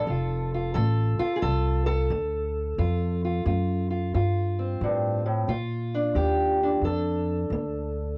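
Lightly reverberant and homespun with a cassette-tape grain, this laid-back, swaggering acoustic country blues excerpt swings at 89 BPM in F mixolydian, pairing a dark, boxy fingerpicked parlour steel-string guitar carrying the melody with a woody pizzicato upright bass, both up front, as the harmony moves from F to Bb at 5.5 seconds.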